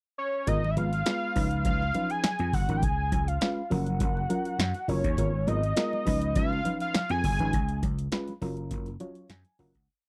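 A dry, close recording with a 1970s studio character carries this funky, late-night piece of early-eighties boogie funk, which opens on a pickup bar before settling into its verse. Up front, a fat, detuned sawtooth lead with a sub octave, vibrato, chorus and slapback echo sings a motif-based melody until 7.8 seconds, while a round, warbling FM electric piano with chorus plays syncopated chord stabs and a short fill near the end. Underneath, a bright, growly slap bass drives a syncopated boogie line beside an electro drum machine's deep kick, punchy snare and metallic hats, with very quiet, damped congas adding a syncopated groove as the track fades out from 7.5 seconds.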